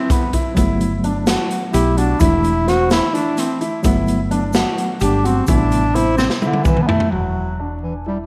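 A moderate spring reverb gives this short cut from a longer progressive instrumental its space, with a breathy bass clarinet soloing up front in jazz style with light vibrato over a driving, intricate 7/8 groove at 256 BPM in eighths. A worn, slightly out-of-tune tine electric piano with medium tremolo through a combo amp comps beside dark concert grand arpeggios treated with tape echo, while a woody, round fretless bass enters at 0.6 seconds and a boomy big-room drum kit and a grainy, very quiet tube shaker push the pulse. The harmony moves from a rootless Am9 through Gmaj7 and C69/E, and a drum fill from 6.2 seconds leads to an Esus2 at 7.1 seconds, where the bass clarinet, grand piano and bass carry on briefly.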